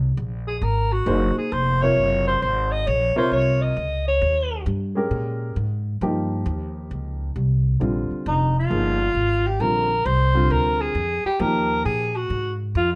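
The upright bass opens the recording alone, its woody, thumpy pizzicato tone sitting up front on gut strings, before the alto saxophone enters at 0.5 seconds. This is relaxed, sophisticated small-group jazz in the swing and bop vein, moving at 134 BPM in 4/4 with a swung eighth-note feel in Eb mixolydian. The saxophone carries the melody with a breathy, whispered quality, a soft attack and light vibrato, sounding intimate yet set at a slight distance in the room, and it pauses after 4.6 seconds before returning at 8.3 seconds. From 1.1 seconds a dark, mellow grand piano fills in the accompaniment with a short-sustained, natural-sounding tone. The harmony moves through dominant sevenths on Ab, Eb and Bb, reaches Eb and then closes on an Ab5, all under a light reverb, in a brief passage cut from a longer piece.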